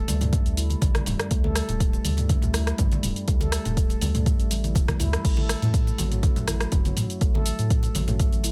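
An up-front, overdriven electronic kick drum anchors this driving, earthy afro house excerpt at 122 BPM in 4/4, its deep, layered punch carrying a slight 16th-note swing and playing from 0.3 to 8.3 seconds. Beneath it, a round analog bass with a nasal, filter-plucked tone and fast attack sustains low notes through tube saturation and sidechain pumping. A ringing stainless-steel handpan, close-miked and dry, spins meditative arpeggios with sharp finger strokes, its pumping motion trailed by dub echo. An overdriven deep house kit adds crash cymbal, hi-hat, rim click, shaker and toms, all sounding re-recorded in a small room, while bright, compressed congas struck with hard hands sit in the background. The harmony rests on Dsus4 before shifting to A5 at 5.2 seconds, all in a close, dry space with little reverb.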